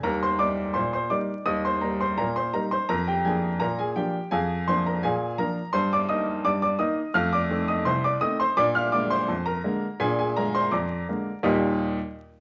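In a straight 2/4 at 84 BPM, this playful, lively ragtime fragment from a longer piece in Eb major features a solo upright piano, woody and vintage with a short sustain, sitting up front in a wet studio reverb over a bed of vinyl crackle and a dulled top end, moving from Eb through Bb7/F and F7 to Bb7 before settling back on Eb at 11.4 seconds.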